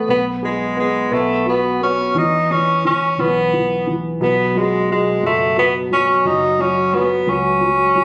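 Swaying and heartfelt, this short cut from a six-eight pop ballad sets a warm, jazz-style tenor saxophone up front, singing the melody with light vibrato and scooped notes in a distant, roomy tone, over concert grand piano accompaniment with deep bass and a dark, round, foam-muted vintage electric bass, all heard through a moderate stage reverb with a small-room, phone-in-the-room character.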